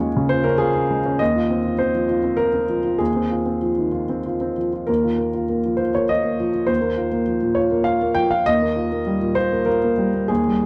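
This is neoclassical minimalist piano, hopeful and peaceful, taken from a longer piece and lasting 10.7 seconds. A solo upright piano plays throughout in 3/4 at roughly 92-102 BPM with a rubato feel, tuned to A4 = 439 Hz and spanning Eb2 to G5. The instrument sits up front and sounds woody, intimate and natural, with its action noise clearly audible. The harmony moves from Db/Eb to Fm7/Eb at 1.2 s, then to Bbsus4/Eb at 4.9 s, and settles on Ebadd9 at 8.5 s. A moderate studio reverb of 0.6 s surrounds the piano, and the overall production is dark and warm.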